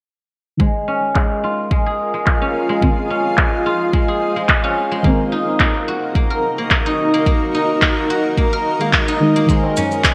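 A silvery guzheng played with fingerpicks sits up front, ringing out arpeggios between Ab3 and Bb4 through a low-pass filter and delay in this organic downtempo piece at 108 BPM in Bb minor, with a mystical mood. Beneath it, a deep, mellow chord stab with a fast attack and decaying tail pumps with sidechain compression, its detuned, chorused tone carrying a filter sweep, while a cloudy granular pad enters at 1.5 seconds with slow-attack, blurred sustained chords and a long release. An up-front, tape-warm electronic kick anchors the straight 4/4 groove from 0.6 seconds, joined by electronic handclaps and cabasa shaped with low-pass filtering and gated reverb. A low-tuned, band-limited tabla rings briefly near the close at 9.6 seconds. The harmony moves from Bbm7 through Cm7b5 and Ebm back to Bbm7, all bathed in a wet plate reverb with a bright 1980s-style digital sheen, cut from a longer piece.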